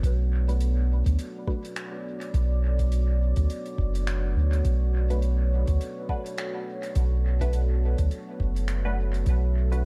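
A round, up-front sub bass with tube saturation anchors this deep, spacious ambient dub excerpt at 104 BPM in B minor, resting on a single Bm7 chord beneath a dark, detuned sawtooth pad with chorus and reverb, a soft tape-warm kick in the background, faint finger snaps and hi-hat from a soft-mallet kit treated with dub echo, and a muted, phased chord stab with 12-bit grit that appears briefly at 0.5 seconds and returns at 5.1 seconds.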